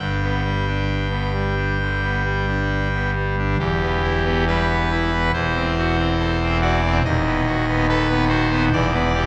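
A solo pipe organ sounds on its trumpet stop from the first moment, bright and brassy with a crisp chiff and a baroque voicing placed up front. This classical, chorale-style piece moves at a slow, rubato 66-72 BPM in 4/4, with a reverent, serene mood. It opens on a G major chord, then turns toward E minor at 3.6 s, passing through darker altered harmony before settling back on E minor near 8.7 s. The organ spans a broad compass, from a deep D#1 up to G5. A lingering church reverb, about 3.6 seconds long, surrounds the organ and lets each chord hang in the air. The passage is cut from a longer piece and runs to 9.3 s.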